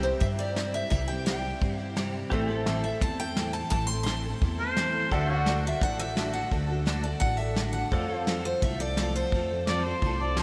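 A straight 4/4 pulse from a soft brush kit with punchy kick, entering at 0.2 s, and a woody, thumpy pizzicato upright bass drives this nostalgic, heartfelt honky-tonk and classic country excerpt, where a bright jumbo steel-string acoustic guitar picks the melody through lush chorus, a full-bodied dreadnought acoustic guitar adds picked accompaniment with ensemble chorus, a twangy pedal steel guitar holds sustained chords in the background with analog chorus, a very quiet, clear upright piano accompanies, and a mellow harmonica with scooped notes slips in at 4.6 s, the whole mix soaked in huge, dreamy ambient reverb.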